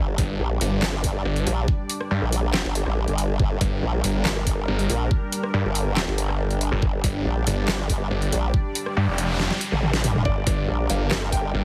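A half-time 4/4 groove at 140 BPM drives this heavy, menacing wobble dubstep in G minor, built on a knocking, overdriven electronic kick and an up-front drum kit with a deep snare, bright hats, handclaps, rim clicks and toms in a small room. Two sawtooth basses dominate the low end: a formant-sweep wobble bass with chorus and a snarling, growling distorted saw bass with a moving notch, both sitting under a lush, thick unison pad that pumps to the sidechain through chorus and phaser. A background noise sweep arrives at 8.8 seconds and is joined by a drum fill at 9.4 seconds. At 10.3 seconds a soft, felt-muted upright piano enters with a delayed melody, all under a heavily compressed, radio-like sound with light reverb.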